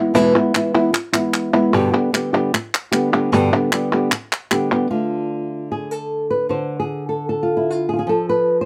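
A flamenco guitar opens this dramatic, fiery passage cut from a longer piece, its warm, thumb-plucked tone sitting up front and carrying the melody from low E2 up to C5, with finger squeak audible on the strings. Crisp, dry palmas hand claps join almost at once, close and forward in the sound, and continue until 4.9 seconds. The tempo is a brisk 151 BPM in straight 4/4, with the harmony moving from E to G before shifting to D minor at 4.9 seconds, where the guitar carries on alone into a second section that closes on F. Close, detailed microphones capture the acoustic instruments with a light reverb around them.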